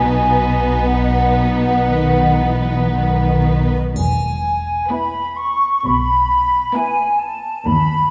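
An airy, hollow flute section sings its second line up front over a lush, rich violin melody on B4, a background violin line, a smooth viola accompaniment and a bass of expressive cellos and up-front double basses, with a dry triangle entering at 4.0 s as the harmony moves from B to E, in this tender, lyrical excerpt of a slow romantic symphonic movement in E major at 55-68 BPM, played with rubato and vibrato strings in a reverberant hall with vinyl crackle.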